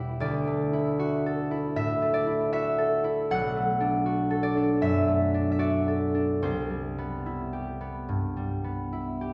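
Wistful and mysterious, this brief rubato classical fragment for solo concert harp rings out bright and up front across a span from B1 to F#5, its fingerpicked chords moving from Dadd9 to Bm7 and then Cmaj7 at 6.4 seconds, all bathed in the lush reverb of a recital hall.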